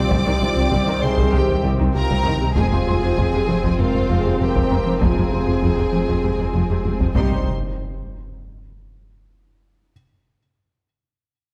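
Set in a moderate scoring-stage reverb, this brooding, futuristic hybrid orchestral and electronic film cue moves at 98 BPM in 4/4, its harmony moving from C minor to F minor and back to C minor. A distant studio violin section sings the high melody over a clear second violin line, lush violas, focused cellos and very quiet double basses, while a background French horn section, roomy trombones, a hollow, flute-like chorused pad and a faint, boxy felt-muted upright piano fill out the texture. Underneath, a warbly lo-fi pluck arpeggiates, a rubbery, saturated square bass plays a riff over a clean sine sub bass, and a hard-stick taiko ensemble drums softly until a huge, dark impact lands up front at 7.2 s.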